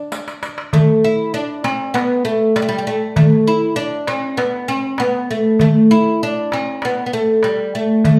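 Captured live in one room with a moderate large-studio reverb, this festive Arabic maqam ensemble piece in D maqam rast moves at 98 BPM in a straight 4/4, opening with a drum fill from 0.1 to 0.7 seconds in which a close, dry riq with hard hands adds bright jingles until 0.5 seconds, while a crisp, high metal-shell darbuka drives the percussion and an up-front, woody, plectrum-plucked fretless oud with double strings carries the melody between G3 and E4 throughout.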